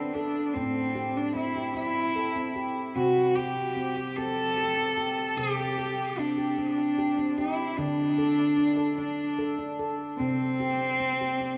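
A single bowed cello plays an intimate, up-front melody with light vibrato, soft attack and an airy sul tasto tone, alongside ringing, bright handpan arpeggios struck with sharp finger strokes on nitrided steel; both carry tape echo inside a wet echo-chamber reverb in this dreamy, calm piece of meditative world music in 6/8 at 50 BPM in C major, tuned to A4 = 438 Hz, that moves through D5, Am and C5 chords.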